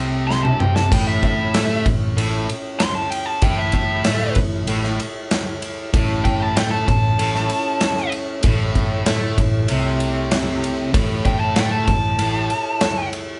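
A fuzz guitar riff, bright and double-tracked, opens alongside round, foam-muted picked bass and a smooth tonewheel organ holding sustained chords through a slow rotary speaker, before a drum fill at 0.3 seconds brings in the punchy big rock kit with bright cymbals and a dark, overdriven lead guitar singing a bluesy melody, giving this swaggering, driving blues rock and southern rock excerpt the feel of a power trio playing live in one large studio room.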